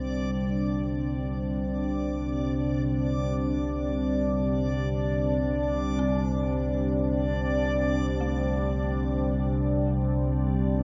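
Ominous and unsettling, this short ambient passage drifts in free time, cut from a longer piece and resting on a Csus2 chord. A deep, rumbling drone from C2 to C3 sits up front, its detuned triangle and sawtooth tones rising on a slow attack and lingering with a long release. Above it, a moody sawtooth pad with unison voices, a sine sub octave and chorus holds sustained chords between G3 and D4, mellow and close. A reversed, granular texture on D5 fades in across the full 10.8 seconds, its bright, dreamy swelling adding unease, while a very quiet FM synth bell plays eerie, inharmonic arpeggios from A3 to C4 with a fast attack that decays away. The mix is soaked in a huge, wet reverb with an 8.4-second tail.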